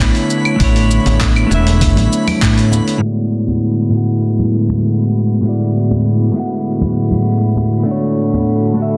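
A straight 4/4 groove at 99 BPM carries this blissful sunset chillout excerpt, where a gritty, dusty soul sampler-style drum kit of claves, handclaps, hi-hat and shaker ticks beneath an up-front clean electric guitar with vintage 12-bit sampler grit and delay, over a breathy, detuned pad with chorus and a distant glassy harmonics texture of drifting overtones. A round, woody fretless bass plays only until 2.8 seconds, a thumpy electronic kick sits in the background between 0.6 and 2.5 seconds, and soft-handed congas tap through most of the clip as a filter sweep runs from 3.0 seconds, with chords moving from Bm11 to E9/A and then Dmaj7/A, all in a dense, limited mix with light digital ambience.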